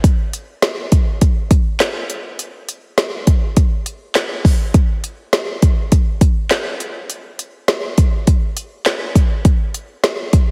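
From the first beat, a deep house drum kit plays on its own, carrying a pop groove at 102 BPM in a straight 4/4 feel. The electronic, layered kit sits up front, built from a deep kick, a woody snare, smooth hi-hats and handclaps. The mood is upbeat with a wistful edge, and the kit plays across the whole 10.5 seconds of this short cut from a longer piece. A light reverb gives the drums a touch of space. The mix is heavily compressed, lending it a radio sound.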